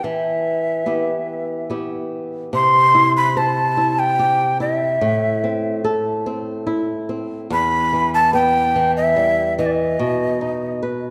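Andean folk in E minor at 72 BPM in a 3/4 lilt, this festive yet wistful piece is cut from a longer performance and tuned slightly low, with A4 at 437 Hz. A breathy large quena carries the melody up front, its woody, end-blown tone marked by a crisp, chiffy attack and vibrato, while a dark, fingerpicked flamenco guitar, also up front, accompanies with audible finger squeaks through chords moving from Em to C, Am, back to Em and finally B at 10.0 s. The pair sits in a moderate concert hall reverb that gives the sound a spacious, ringing tail.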